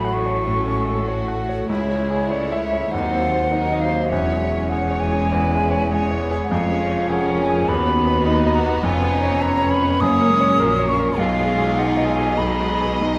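The rhythm flows freely at 101 BPM in 4/4, with uneven, rubato beats that give this classical passage a lyrical, passionate character. A clear, polished concert grand piano carries the melody up front, its deep bass and long sustain spanning B1 to F#5, while a violin section also plays the melody in the background with expressive vibrato. A hollow, pure concert flute plays a close-miked, tongued second line, joined by a second violin section bowed sul tasto with soft attack and light vibrato for an intimate tone. Beneath them, a rich viola section supplies accompaniment, a tight French horn section holds sustained chords with a smooth top, and a bright, intense cello section joins a focused double bass section in a lush bass. Timpani struck with medium mallets sound very quietly on F#2 from 10.0 to 10.8 s. The harmony moves from F#m/A through C#m and C#7/E# to F# and G#m/B in this close, detailed recording with light reverb, cut from a longer piece.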